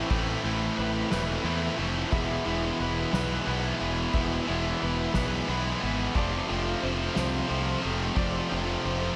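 Post-rock in a slow 6/8 at 60 BPM, brooding and cathartic, this short 9.2-second cut from a longer piece moves from Amadd9 to E and then F6 inside a lush hall reverb that gives it a big arena sound. Up front, a bright, tight distorted guitar riff with slapback echo sits beside a fuzzy, overdriven fingered bass. A second overdriven guitar riff and a felt-muted upright piano fill the background, the piano playing mellow arpeggios with slapback echo from 0.8 seconds. Very quiet underneath, a dark, clean electric guitar plays arpeggios alongside a distant soft-mallet drum kit with dark cymbals and a punchy kick, and a warm pedal steel guitar holds sustained slide chords with volume swells.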